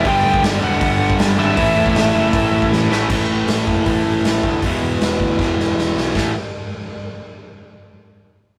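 Punk rock with an upbeat, rebellious charge, this short cut from a longer piece drives along in a straight four. A nasal lead guitar with a parked wah, dark and overdriven, carries a brief melody at the top before dropping out at 2.7 seconds, while a crunchy, double-tracked overdriven guitar riffs behind it until 3.1 seconds. Two bright distorted electric guitars, one picked and the other tight and set back, play low riffs through the whole passage over a growly, fuzz-laden picked bass sitting in the background. Up front, a raw garage drum kit with a punchy kick, medium-tuned snare, hi-hat and crash sounds gritty and saturated in a pumping stone room, its top rolled off, and fills at 2.7 and 5.4 seconds push each section into the next. The chords move from G to A, then shift to A5 and E5 power chords, all captured as a rough rehearsal-room recording with light reverb.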